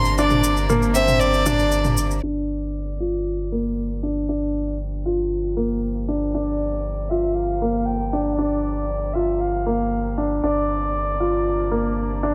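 A straight 4/4 pulse at 117 BPM drives this melancholic, cinematic piano-and-strings electronica in G minor, where layered electronic shaker and toms play only until 2.2 seconds beneath a woody, up-front upright piano riff with audible action noise, tape echo and a filter sweep from 2.2 seconds onward, a round sine sub bass holding G1, a distant string quartet sustaining clear, vibrato-rich chords in the background, and an intimate, airy, sul tasto solo violin melody with tape echo, set in light reverb and studio ambience as the harmony moves from Bbadd9/G to Gm7 and back at 10.4 seconds.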